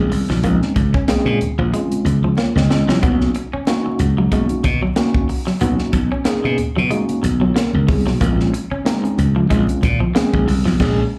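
Heard through a club PA with roomy reverb and vinyl crackle, this hypnotic, sly funk excerpt moves at 93 BPM with a light 16th-note swing, as a growly, bright slap bass sits up front beside a crisp fusion kit of dark cymbals, high-tuned snare and punchy kick, while a twangy, slightly broken-up picked guitar riff with slapback echo, mellow clean electric piano stabs bathed in plate reverb and slapback, and very quiet low-tuned, thin-skinned congas ride over Bbm7 and Bmaj9 chords, with a drum fill at 2.4 seconds and a full-band accent closing things at 10.8 seconds.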